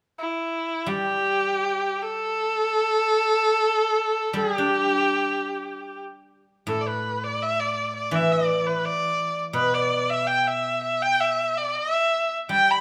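A rich, smooth erhu carries the melody from 0.2 s, bowed by one player with vibrato and portamento and sitting up front in the mix. A guzheng, played with fingerpicks, joins at 0.9 s with silvery, ringing accompaniment lower in the mix, and the graceful, pastoral piece moves in free time in a G gong mode, shifting to a new section at 6.7 s. Moderate recital hall reverb surrounds this Chinese chamber ensemble passage, which is cut from a longer piece.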